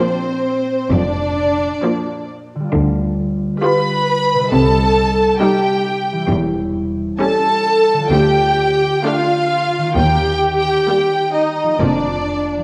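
A focused, up-front violin section carries the melody in this serene classical passage, its bowed tone rich with vibrato, while a darker, woody second violin section adds a second line in a lower register with a lush, smooth-topped sound. Beneath them, a close, even viola section fills in the accompaniment, and a concert harp adds ringing fingerpicked arpeggios across a broad range. At 0.9 s the cello and double bass sections enter together to anchor the bass, the cellos lush and the basses close and focused. The metre is 4/4 but the pulse breathes freely in rubato, moving through a gentle progression that settles back on Bb/F at 11.8 s. The ensemble sits in a wet scoring-stage reverb, and a worn cassette-tape quality adds a warbly pitch drift, giving this fragment of a longer piece a warm glow.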